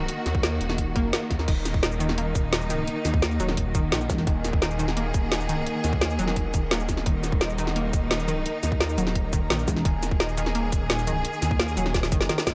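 A light reverb and a small-room character colour this tense, mechanical slice of dark technical drum and bass, where a thick, swirling detuned saw bass with phaser and overdrive sits up front, pumping under the sidechain beside a tight electronic kick and a layered kit of woody snare, metallic hi-hats, cabasa and crash cymbal. Biting, lush symphonic strings hold sustained chords while a round, chorused analog pluck arpeggiates through analog delay and an airy, breathy pad evolves softly in the background. A heavy, pulsing pluck wobble bass appears briefly at 4.1 and 9.7 seconds, and a drum fill arrives at 11.9 seconds.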